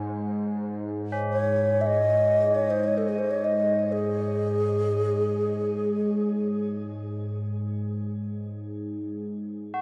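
World meditative music in free time, haunting and spacious, where an up-front analog drone on G#2 with chorus and phaser sustains from the start, solemn tubular bells ring in at 1.1 s with shimmer reverb, and a mellow, hollow alto flute with vibrato and a crisp attack sings from 1.3 s to 6.7 s through shimmer reverb and delay, all set in a huge, dark ambient reverb in this fragment cut from a longer piece.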